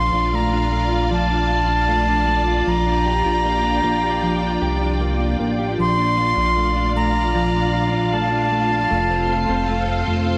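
Bathed in a moderate concert-hall reverb, this blissful, floating dream pop excerpt in Bb major drifts at 77 BPM, with a pure, straight-toned concert flute carrying the up-front melody through delay, a silky, warbling string machine holding sustained chords, a mellow, clean electric guitar playing fingered arpeggios through analog chorus and delay, and a glossy, retro chorused synth bass anchoring the low end.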